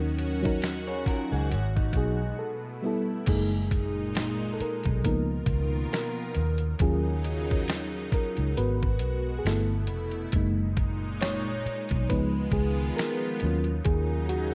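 A slow, late-night R&B and neo-soul groove in E-flat minor opens with a dark, full-bodied FM electric piano with tremolo, a thick, detuned sawtooth pad treated with chorus and phaser, and a round, foam-muted vintage fingered bass, all sitting in a smooth 68 BPM 4/4 with a swung sixteenth-note feel. A compressed, pitched-down boom bap sampler-style kit joins at 0.2 seconds, its thumpy kick, medium-tuned snare, hi-hat, finger snaps and crash placed up front with a gritty edge. A picked electric guitar through a small old amp, slightly broken-up and lo-fi, adds a brief second line from 0.9 to 2.4 seconds before a short break. From 3.3 seconds the electric piano takes a solo over lush extended harmony moving through chords such as Ebm7, Abm7, G69, Gb69 and Db13. Light reverb and a worn cassette-tape character with warbly pitch drift give the whole cut a hazy, nostalgic sheen.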